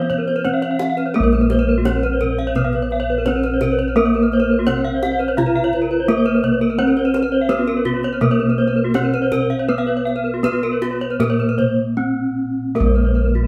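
Brilliant and ceremonial, this excerpt of Balinese gamelan in Bb pelog moves at 76-86 BPM in a straight 4/4, with an up-front bronze metallophone carrying the melody in its horn-mallet ring and shimmering paired-tuning beats, two more metallophones spinning arpeggios (one close and dry, the other airy), round, beating bossed gongs holding the bass, and a tight, saturated kendang struck with hard hands in the background, all played live together in a large studio with moderate reverb.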